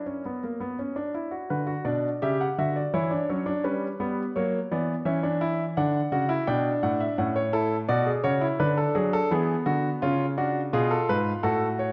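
A natural, up-front grand piano with a deep bass sits in a moderate stage reverb, heard in this short cut from a longer piece. It is a stately yet joyful baroque-style three-part fugue in B minor at 84 BPM in a straight 4/4, played on solo concert grand across a range from G#2 to G5. Opening on an F# chord, the harmony settles into B minor at 1.5 seconds and moves through E minor and F#7 before closing on C#7.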